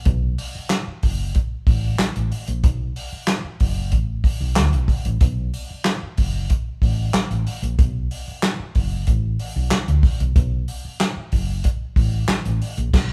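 A soul drum kit and a round, punchy hollow-body short-scale electric bass open together in this cool, sly funk excerpt at 93 BPM in B minor, tuned to A4 = 438 Hz. The roomy kit brings dark cymbals, a medium-tuned snare, a tight kick, handclaps, hi-hat and crash, while the amped bass sits low and up front. Both play live in one room under a moderate large-studio reverb until a band accent at 12.9 seconds.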